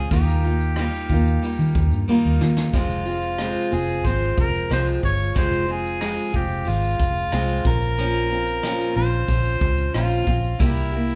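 A straight 4/4 pulse at 92 BPM carries this wistful, reflective acoustic pop excerpt in F minor, where a mellow, smooth-topped harmonica sings the melody over bright, fresh-stringed picked parlour acoustic guitar, a dark, round, foam-muted fingered electric bass and a soft brush kit with punchy kick, rim click and shaker that enters at 0.1 seconds and plays a fill at 2.1 seconds, the band heard live together in a large studio room as the chords move from Ebadd9 through Fm and Bbmadd9 to C7.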